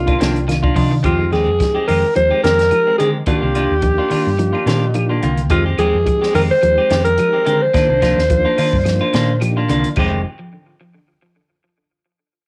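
This short cut from a longer afrobeat piece has the lightly reverberant sound of a home recording made on cassette. At 107 BPM in 4/4, with a gentle swing on the sixteenths in F dorian, the groove feels funky and hypnotic as it alternates between Cm11 and Fm9. A raspy, gritty alto saxophone sits up front carrying the melody, with vibrato and a smooth top and a cassette-tape tint, until it stops at 9.4 seconds. A clear trombone with scooped notes is barely audible and distant for only the first 0.5 seconds. Beneath them, a dark, round hollow-body bass anchors the low end, while a clean semi-hollow guitar plays stabs and a slightly broken-up guitar picks arpeggios in the background through analog chorus and tape echo. A reedy electric piano with fast tremolo adds background accompaniment and fills, a compact cocktail kit brings a high-tuned snare and punchy kick from a small room, and woody claves tap far off in a large space.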